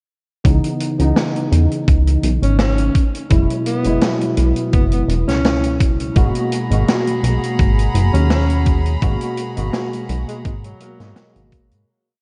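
Vaporwave at 84 BPM in G# minor, this short, complete piece feels nostalgic and melancholic, its dreamy mix soaked in plate reverb and cassette tape character. A slow, thumpy machine kick, overdriven and gritty with 12-bit sampler texture, sits up front beside a small-room acoustic kit of closed hi-hat and a medium-tuned snare with a rolled-off top, playing a slowed pop beat with a light swing on the sixteenths. A glossy, detuned chorused synth bass carries a syncopated riff, while a clean tine electric piano through a combo amp holds drop-2 voiced chords with syncopated pushes, coloured by ensemble chorus, delay and sampler grit, over a progression moving from C#m9 to F#9sus4 to G#m9. At 2.4 seconds a clear alto saxophone enters with subtone and a soft attack, playing short jazz-style phrases through tape echo. A distant, reedy chamber string section adds a bowed, gently vibrato pad from 6.2 seconds, before the whole piece fades out from 8.1 seconds to its close at 11.9 seconds.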